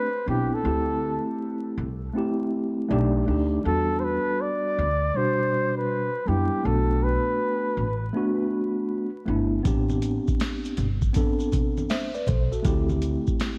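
A breathy flugelhorn and a mellow tine electric piano open together, the horn carrying a whispered, intimate jazz melody between G4 and D5 through an analog delay while the piano lays down a rootless Am11 voicing and then D9sus4. This is smoky, cool jazz-hop in A dorian at 80 BPM, with a lazy swing on the sixteenths and chords moving through B7alt, Em9 and Bm7. A woody, thumpy upright bass with gut strings joins almost at once, its dark low notes roughened by transformer saturation, and the electric piano slips in a short fill from 2.5 to 3.7 seconds. The flugelhorn drops out at 8.2 seconds, and a booming analog drum machine arrives at 9.6 seconds with a deep kick, crisp snare and metallic hats, joined by bright, compressed maracas and congas sitting in the background. The sound is that of worn, warbling cassette tape, with vinyl crackle, drifting pitch, light reverb and a small-room ambience, in a short excerpt cut from a longer piece.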